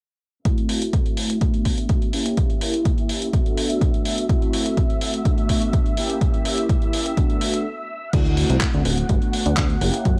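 Mellow, round synth brass opens this sunny, feel-good filtered disco house excerpt, shaped by chorus, phaser, sidechain pumping and a low-pass filter, alongside veiled, muted strings carrying vintage 12-bit sampler grit; a punchy, up-front electronic kick and a dusty sampler-style kit of gritty handclaps, hi-hat and crash join them, with a barely audible tambourine, a filter sweep leading to a short break at 7.7 s, and a plucky, funky analog bass arriving at 8.1 s in a dry, gritty hardware sound.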